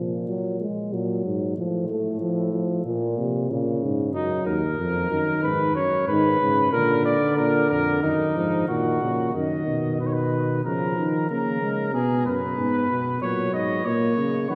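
A dark, close-miked euphonium and a smooth-topped bass trombone open this serious, driving imitative canzona for brass in Eb minor at 93 BPM, both played with light vibrato in a wet church reverb that places the ensemble further back in the room. A warm, roomy flugelhorn enters with the second line at 4.2 seconds. At 9.3 seconds a mellow, distant trumpet takes up the melody as the chords move through Abm to Gb before the cut.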